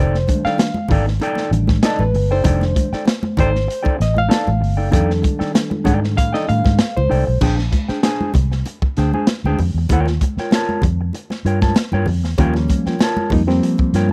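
A barky, lightly overdriven reed electric piano with phaser solos through the first 7.4 seconds of this energetic, gritty 97 BPM funk piece in F mixolydian, then drops out and returns at 12.4 seconds, over a mellow, clean electric guitar, a round, foam-muted fingered bass, a crunchy, saturated breakbeat kit with dark cymbals and a tight kick, and bright congas in the background, captured in a dry, close 1970s-style small-room sound.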